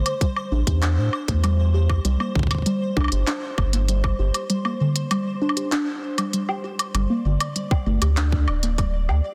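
IDM with a melancholic, glitchy mood, this short excerpt moves in a straight 4/4 feel over a chord progression of Am7, C5 and G5. A warbling, dusty pluck plays arpeggios up front, its detuned square and sawtooth tones carrying a noise layer, a filter sweep, analog chorus, 12-bit sampler grit and delay. Beneath it, a rubbery, hollow square bass bounces with a moving notch and a dark, fast-attack sound. A pulsing, tempo-synced texture sits high and faint, its detuned triangle unison softened by chorus and reverb. An organic electronic kit of smooth hi-hats, handclaps and woodblock runs through digital delay alongside a tight, tape-tinged kick placed up front. The mix has light digital ambience and a dense, heavily limited modern master.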